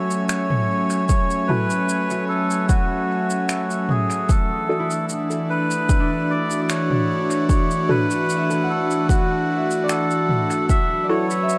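A reedy, nasal melodica carries the melody up front through dub echo in this peaceful, spacious ambient dub excerpt, over a bright, airy pad with chorus and a background concert harp ringing out fingerpicked arpeggios through tape echo. An overdriven electronic kick enters at 1.1 s, joining an organic electronic kit of finger snaps, shaker and toms that has been playing since the start, while muted, mellow filtered chord stabs decay with chorus and dub echo in the background. The harmony moves from F#m7 to E9sus4, and a glassy, drifting harmonics texture surfaces at 11.0 s, all set in an echo-heavy mix with moderate spring reverb.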